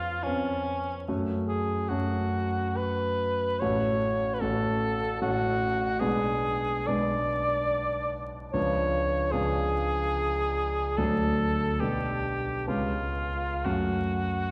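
Yearning and melancholic, this romantic classical duo for cor anglais and grand piano unfolds in F# minor, in a slow, rubato 3/4 that drifts between 58 and 76 BPM. The cor anglais carries the melody from the opening moment, its warm tone touched with light vibrato and sitting up front in a solo role. Beneath it, the concert grand piano supplies a clear accompaniment with deep bass and long sustain, also placed close to the listener. The harmony opens on C#7/E# before reaching F#m, then passes through a diminished chord and a C#7b9 before turning briefly to D and G/B, then settling back on F#m at 13.6 seconds. A lush scoring-stage reverb and a more distant vantage give the room a spacious, hazy quality, while vinyl crackle adds an aged patina to this 14.5-second excerpt cut from a longer piece.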